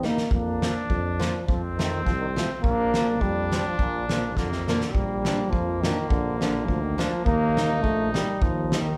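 Opening on a drum fill, this bouncy, jolly alpine folk dance-band excerpt in Bb major moves at 104 BPM in a lightly swung 2/4, with a clear euphonium carrying the melody up front with light classical vibrato, a soft-attack trumpet on the second line, a mellow tuba bass, a dark, woody, boxy picked acoustic guitar on old strings sitting in the background, and a loose drum kit with a fat snare and punchy kick up front that plays another fill at 4.4 seconds, all set in a moderate recital-hall reverb.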